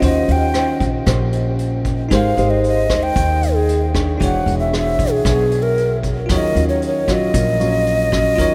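Bathed in a huge ambient reverb that places it in a vast, echoing space, this short bossa nova excerpt carries a melancholic, wistful air. A breathy, reedy clay ocarina sits up front with the melody, close-miked with vibrato and tongued notes, while a clean, bell-like tine electric piano stays in the background and a thumb-plucked classical nylon-string guitar adds warm accompaniment. Beneath them, a woody pizzicato upright bass and a vintage brush drum kit, with a punchy kick, hi-hat, rim click and a rolled-off top, hold a straight 4/4 feel across chords such as Eb13, Abmaj7, E13 and Ebm9.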